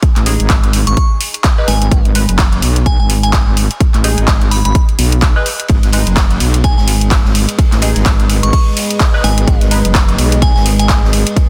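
A punchy, overdriven electronic kick and an overdriven house drum kit of handclaps and hi-hat start this swung, bouncy and swaggering bass house excerpt, joined almost at once by an up-front metallic wobble bass with tube saturation and sidechain pumping, a nasal, band-passed chord stab with phaser and delay, and a crystalline synth bell melody, while an acoustic jazz kit of ride, hi-hat and high-tuned snare slips in quietly at 5.7 seconds and a moody analog pad enters in the background at 7.0 seconds, the whole mix dry, dense and heavily limited.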